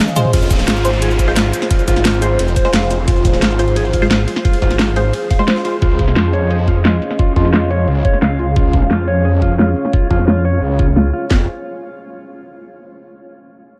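Mechanical and aggressive, this dark technical drum and bass fragment is driven by a snarling, detuned saw bass that growls up front with distortion, tube saturation and sidechain pumping, over a knocking kick and cracking snare from the drum and bass kit, a dubstep kit with a huge snare, metallic low-passed hats, toms and cabasa, and a very quiet, gritty breakbeat sampler kit of ride and high-tuned snare that drops out at 5.7 seconds. A moody analog pad with chorus and a mellow, clean fingered electric guitar playing arpeggios through 12-bit sampler grit and ambient delay fill the space, while a muted, phased dub chord stab sits in the background and a faint downlifter falls away by 3.1 seconds. The harmony moves from Fm to Dbadd9 at 5.8 seconds, and the whole mix is dreamy and soaked in a huge ambient reverb.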